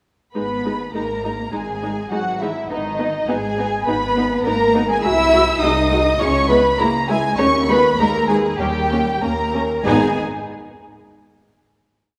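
A wet scoring-stage reverb with a 1.9-second tail surrounds this short, complete classical-period movement for string orchestra: dramatic and urgent, in G# minor at 101 BPM with uneven beats. The dark, distant-sounding first violins carry the vibrato-rich melody up front, the intense second violins and the soft-attacked, warm cellos double the tune at the octave, and the smooth, even violas supply repeated notes and sustained chords. Focused double basses mark the beats and hold sustained notes beneath, moving from G#m through C#m and a suspended D#7 before the whole ensemble settles on a final G#m chord at 9.8 seconds.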